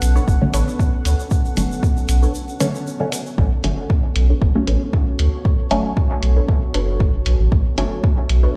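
Dub techno with a cavernous, meditative mood, cut from a longer piece, where a deep kick and round sine sub bass sit up front beneath a dark, detuned ambient pad holding a Bm9 chord, muffled sampler-style hi-hats, a grainy tube shaker that plays only until 3.4 s, and two muted, phased chord stab parts with dub echo, one a riff carrying cassette-tape coloring and the other an evolving stab pushed to the background, with a filter sweep on the stab sound through the opening 3.4 s, all inside a stone-room reverb that sounds like a big sound system playing in a bare room.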